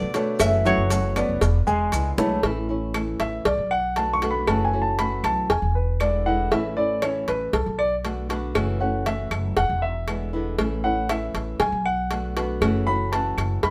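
A warm concert grand piano stands up front in this sunny, relaxed Cuban son and guajira clip at 118 BPM in A major, first spinning arpeggios and then taking a solo from 2.4 seconds to the end over a cycle of A, Bm7, F#m7 and E7. A nasal, metallic resonator slide guitar played with fingerpicks carries the opening melody until 1.4 seconds, while a fingerpicked flamenco guitar with audible finger squeak and a growly, thumpy pizzicato upright bass hold the foundation. Tight, high-tuned cowbell and bongos struck with hard hands sit close and dry, joined by woody claves in the background, grainy maracas until 2.4 seconds and a drum fill at 2.2 seconds, all in light reverb.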